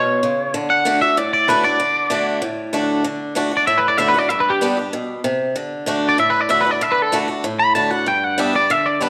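A clean, twangy electric guitar opens this rollicking, rowdy rock excerpt with a solo line, carrying a tape echo and a scooped, bright edge as it sits up front. Underneath from the start, a picked acoustic guitar plays swing-style accompaniment, its fresh strings giving a bright, boxy tone with audible finger squeak. After a brief opening before any chord sounds, the harmony settles on D, and at about 3.1 seconds the piece moves into a new section that shifts between G and D chords. The electric lead stays in a high register above the lower acoustic part, both guitars sounding close and present. The whole recording is bathed in a wet echo chamber reverb, lending the rowdy twang a roomy studio glow before the fragment cuts off at 9.1 seconds.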